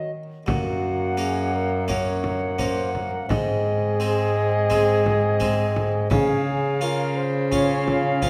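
A wet recital-hall reverb surrounds this solemn, courtly excerpt of a renaissance-style consort dance in a straight 4/4 at 85 BPM, where a dark, close-miked cornet carries the melody with light vibrato beneath a pure, mellow alto recorder singing an expressive second line. A brilliant Flemish-style harpsichord with octave strings and a bassoon set in the background fill out the accompaniment, while an up-front bowed cello with a gut-string, reedy tone anchors the bass. A deep, dry frame drum enters at 0.5 s as the harmony moves from Gb to Ab at 3.3 s and settles on Db at 6.1 s.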